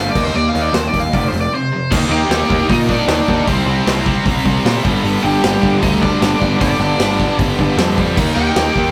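A rough rehearsal-room recording with light reverb and warm saturation carries this angry, raw punk rock excerpt at 154 BPM in 4/4, where a cranked stack guitar plays an overdriven solo melody over a tight, double-tracked distorted guitar riff tucked in the background, a growly, punchy fuzz bass and a big acoustic rock kit with bright cymbals and a punchy kick both up front, before a break at 1.5 seconds gives way to a high-gain, double-tracked riff guitar entering at 1.9 seconds.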